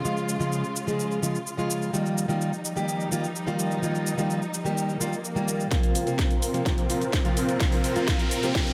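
A boxy, fingerpicked, plugged-in steel-string acoustic guitar stands out up front in this euphoric, uplifting festival progressive house excerpt at 127 BPM, pumping with dub echo over bowed, expressive string chords with a smooth top and an overdriven house kit of bright hats, shaker and cracking snare, before a background swell at 5.0 seconds gives way at 5.7 seconds to a build-up where a huge, detuned supersaw riff plays through a filter sweep alongside a punchy electronic kick and a drum fill, joined by a riser from 6.7 seconds.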